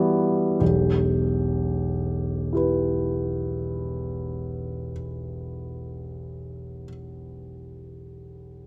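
A clear baby grand piano opens on an Emadd9 chord that settles onto E minor by 0.6 seconds, beginning this short, mysterious, nocturnal passage of impressionist classical solo piano. The playing moves slowly and freely in 3/4 at around 31 BPM, spanning from deep E1 up to B4, with long sustain letting each sonority linger. Miked closely and placed up front in light reverb, the instrument sounds intimate and natural, its audible action noise adding a late-night detail.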